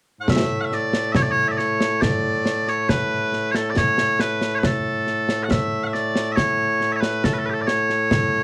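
Piercing, bright bagpipes carry the melody up front from 0.2 to 8.4 seconds in this short cut from a longer piece of Scottish pipe music, sounding proud and ceremonial in A major at a stately 69 BPM in 3/4. Concert snare drum and concert bass drum, with dark cymbals, sit close and dry beneath the pipes. The home cassette recording gives both parts a tape-worn character inside a moderate studio reverb.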